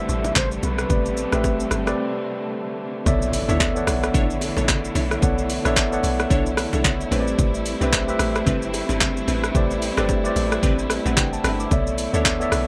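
A swung groove at 111 BPM drives this hypnotic, deep amapiano excerpt in B phrygian, with an up-front deep house kit of handclaps, hi-hat, deep kick, rim click and shaker, very quiet bongos and congas, and a round, percussive log drum bass, while a mellow tine electric piano and a lush, distant string section with sidechain pumping hold Am11 and Bm11 chords. A soft octave-layered synth lead with chorus and delay sings briefly until 1.7 seconds, and after a short break the drop arrives at 3.1 seconds with a very quiet impact. From 3.5 seconds a glassy, crystalline wavetable pluck adds detuned stabs with chorus and delay in the background, all in a dry, close sound.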